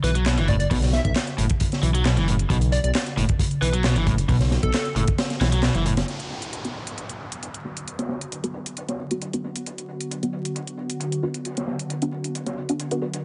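A crunchy, low-passed breakbeat kit with a punchy kick opens this energetic, raw breakbeat piece at 134 BPM in B minor alongside a plucky square-wave lead with an old-record tint and delay, an overdriven semi-hollow guitar riff and a rumbling detuned saw bass, with faint garage handclaps and hats joining a moment later. The lead, guitar and bass stop by 6 seconds, and a downlifter arrives at 6.1 seconds. A filter-swept, muted dub chord stab with tape-worn phasing comes in ahead of a swirling phased analog pad at 7.4 seconds, with vinyl crackle and small-room ambience throughout.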